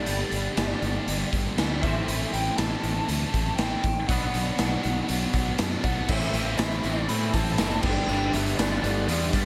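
Indie rock, upbeat and jangly in a straight 4/4, this short cut pairs a twangy, slightly broken-up chorused guitar riff with a bright, high-gain distorted guitar riff, a dark, overdriven lead guitar melody with digital delay, a round fuzz bass, and a punchy, gritty garage drum kit up front in a pumping stone room, with a very quiet jingly tambourine joining at 6.1 s as the chords move from Gadd9 through Am and Bm to G.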